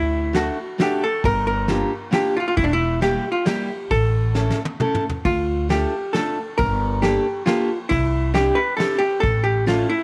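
A dark, hollow-bodied archtop guitar carries the melody up front in this bittersweet, nostalgic musette waltz excerpt, joined by thumpy pizzicato upright bass on gut strings, a full-bodied fingerpicked steel-string acoustic guitar, and a soft brush kit with a fat snare whose fill arrives at 4.4 seconds, all set in a small, lightly reverberant room.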